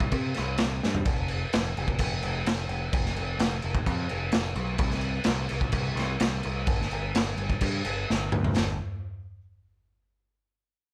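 A faint mains hum and light reverb frame this short, swaggering garage rock cut from a longer piece, set at 128 BPM in a straight 4/4 in G mixolydian. An up-front, saturated drum kit with a punchy kick, medium-tuned snare, toms and dark crash cymbals pumps in a small room, throwing in a fill at 0.8 seconds and another from 8.1 seconds. A bright, growling picked electric bass, amped and overdriven, drives the rowdy groove until it stops at 8.8 seconds.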